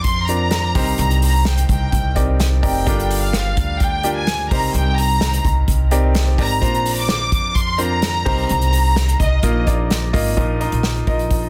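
Anthemic and warm, this piano-driven pop excerpt sets a lush, bowed violin section with vibrato and tape echo up front until 9.6 s over a clear, polished concert grand with a deep low end, a woody, thumpy pizzicato upright bass, and an acoustic drum kit played with bundle sticks, its snare softly clipped, all in light studio reverb under a dense, heavily limited master.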